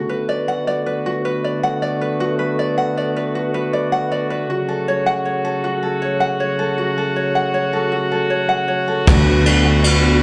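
A slow, straight 6/8 lilt at 52 BPM carries this uplifting, nostalgic stretch of indie folk, cut from a longer piece and heard as a live club gig through the venue's PA with club reverb. A bright, light tenor ukulele plays up-front arpeggios with analog delay and slapback echo over sustained chords from a dark, distant, roomy brass ensemble, while a very quiet fingerpicked acoustic guitar adds accompaniment only until 2.2 seconds, as the harmony moves between D6 and F#m. At 9.1 seconds the arrangement builds: a round, direct fingered electric bass and a soft brush kit with a punchy kick and ride cymbal step forward, joined by a very quiet, brilliant, woody upright piano and a picked plugged-in acoustic guitar with finger squeak and slapback echo sitting in the background.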